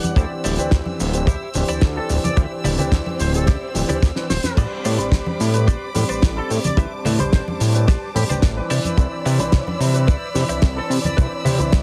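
A fat, saturated sawtooth bass pumps up front beneath a tight, dry kick, damped 70s drum kit and low-tuned congas in this sensual, sleek nu-disco excerpt, where a twangy, chorused clean electric guitar riff picks over D9sus4, Am11 and Cmaj9 chords as a worn baby grand piano and a rich bowed violin section pump gently, a drum fill lands at 4.0 seconds, and a mellow trumpet section carries a delayed melody from 2.0 seconds, all inside a small room with heavily compressed radio polish.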